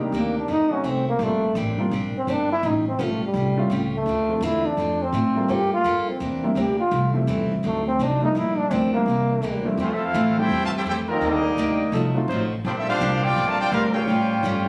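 Joyful and energetic, this big band swing excerpt opens with a breathy solo trombone up front, carrying the melody with vibrato and a soft attack over full-bodied picked steel-string acoustic guitar, a natural-sounding baby grand piano with short sustain, and a woody, thumpy pizzicato upright bass. At 9.8 seconds a close-miked trumpet section takes over the melody as a trombone section sets a second line in the background, and from 11.1 seconds another trombone section holds sustained chords up front. Light club reverb surrounds the band in this room recording made on a phone.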